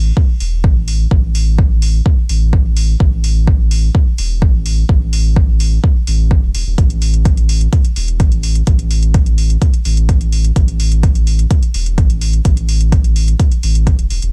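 Deep and cavernous, this dub techno excerpt moves at 127 BPM in a straight 4/4, tuned slightly low to A4 = 438 Hz. A soft, round sub bass built from triangle and square waves sits up front between E1 and A1, its fast attack giving way to sustained tones that pump against the sidechain. The electronic kick arrives at 0.2 seconds as the loudest part, a layered, produced thump re-recorded in a small room and placed close to the listener. Metallic, tape-warmed analog hi-hats enter at 0.4 seconds, sitting far lower in the mix. The sound is dry and intimate, and the whole passage holds a single section for its 14.3 seconds, cut from a longer piece.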